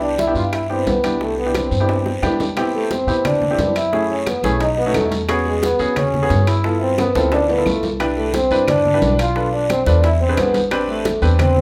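Lively and danceable, this snippet of Afro-Cuban jazz moves at 177 BPM in C major. A mellow, motor-off vibraphone struck with soft mallets carries the melody, while a clear trombone with vibrato adds a second line, over a worn, up-front baby grand piano and a dark, thumpy gut-string upright bass played pizzicato. Close, dry percussion fills out the groove: ringing congas, very quiet high-tuned bongos, raspy guiro, woody claves and metal-shell timbales in the background, with drum fills at 1.9 and 7.0 seconds, all sharing a moderate studio reverb as the harmony travels from Cmaj7 through lush extended chords to Am11.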